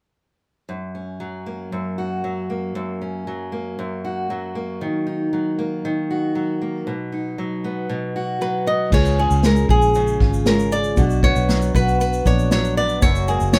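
A lightly reverberant, sunny and heartfelt acoustic pop fragment at 117 BPM in F# major opens on an up-front fingerpicked steel-string acoustic guitar, its fresh strings and audible finger squeak moving through F#, D#m and B. At 8.4 seconds a bright flamenco guitar takes the melody. At 8.9 seconds the rest of the band arrives: a distant, roomy unplugged drum kit with punchy kick, dark cymbals, snare, shaker and bundle sticks, a round, foam-muted vintage electric bass, and a reedy, barky electric piano, lightly overdriven and sitting in the background, as the chords shift to C#, Bm and back to F#.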